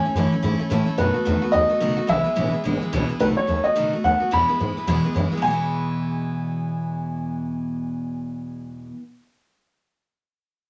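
A dark upright piano carries the melody in this rollicking, upbeat rockabilly excerpt, its mellow, woody tone and long sustain giving the tune a smooth, vintage glow. Beneath it, a picked steel-string acoustic guitar sits up front with a bright, full-bodied dreadnought sound, fresh strings and audible finger squeak, playing accompaniment until the piece cuts off at 9.0 seconds. An upright bass anchors the low end with thumpy, gut-string pizzicato, played lower in the mix than the other two. The music moves at a brisk 216 BPM in 4/4 with a swung eighth-note feel, in E major, passing through A, B7 and E before returning to B7 and E. A moderate studio reverb lends the trio a natural sense of room, and the piano and bass both stop at 8.6 seconds, just before the guitar.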